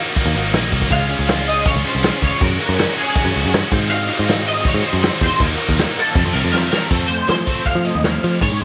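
A straight 4/4 indie rock pulse at 160 BPM comes from an up-front vintage drum kit with a punchy kick and dark cymbals, joined by a round, foam-muted picked bass, while a scooped, double-tracked high-gain guitar drives the riff. Over them a twangy, compressed twelve-string electric guitar with ensemble chorus carries the cool, bittersweet melody, and a clear tonewheel organ sits in the background with sustained chords through a slow rotary speaker. Light studio reverb frames the chord movement from Ebmadd9 through Dbmaj7, Gbsus2 and Ab7, until a drum fill at 6.5 seconds leads into a new section on F at 6.9 seconds, which carries on until the excerpt ends.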